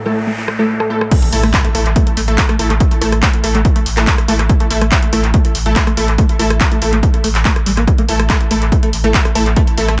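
A straight 4/4 pulse at 142 BPM drives this hypnotic peak-time techno excerpt, cut from a longer piece and set in an echo-heavy mix with light reverb. It opens on a deep, moody sawtooth pad droning in the background with chorus and sidechain pumping, while a noise sweep and a filter sweep on the synth arpeggio build toward the drop at 1.1 seconds, where an electronic impact hits. From there a punchy, up-front analog kick anchors the groove alongside an analog drum machine that has been playing crash cymbal, handclaps, hi-hat and rim click since half a second in, its snare, hats and cymbals low-pass filtered and treated with analog delay. A round sine sub bass holds a low A from 1.3 seconds, tube-saturated, filtered and pumping against the kick. Above it, a tight, nasal sequenced sawtooth riff with a moving notch and tape echo sits in the background, while aggressive, bright rave stabs cut through with thick detuned unison, 12-bit sampler grit and analog delay.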